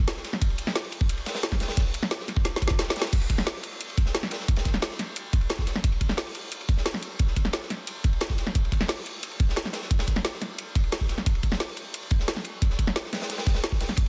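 A straight 4/4 drum and bass groove drives this futuristic, mechanical excerpt, with a knocking electronic kick up front from 0.4 s alongside a layered electronic kit whose woody snare, bright hats and crash cymbal punch through the mix. Beneath them sits a quieter, saturated breakbeat kit with a gritty, medium-tuned snare, dark ride and hats, a rolled-off top and high-pass filtering on its cymbals, hats, snare and room. A drum fill from 2.5 to 3.1 s leads into a second drop, all captured in a dry, dense and heavily limited modern master.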